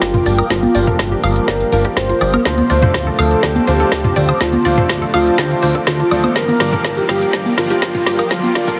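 This excerpt of bittersweet, emotional progressive house opens at once on a velvety synth lead carrying the melody in G minor, its detuned sawtooth tone softened by chorus, a hint of cassette tape and dub echo. Beneath it at 123 BPM in a straight 4/4, a lush unison pad holds sustained chords in the background, treated with chorus and phaser and sidechain pumping, while a bright, brilliant concert grand piano plays stabs with audible action noise, both under a filter sweep as the whole passage works as a build-up. A fat, detuned analog bass pumps against the sidechain, and an up-front deep house kit with a woody snare, smooth hats and cabasa runs a drum fill throughout, backed by a punchy, overdriven but very quiet electronic kick. From 0.1 seconds a round analog pluck adds arpeggios with dub echo, and electronic toms, woodblock and congas, re-recorded in a large room, join the percussion. 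The chords move from Gm7 to Dm7 at 2.5 seconds and back to Gm7 at 6.4 seconds, with a faint riser underneath, all set in light digital ambience and a dense, heavily limited modern master.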